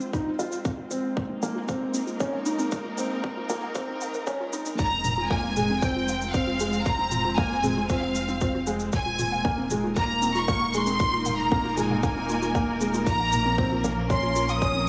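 A bright, lush violin section carries the melody from 4.8 s in this melancholic, cinematic piano and strings electronica excerpt in F minor at 116 BPM, set over a felt-muted upright piano riff with audible action noise, dark bowed chamber strings pumping under sidechain, a warbly lo-fi pluck arpeggio, a round sine sub bass, and an overdriven electronic kick, shaker and toms, as a filter-swept build-up gives way to the drop in a moderate concert hall reverb.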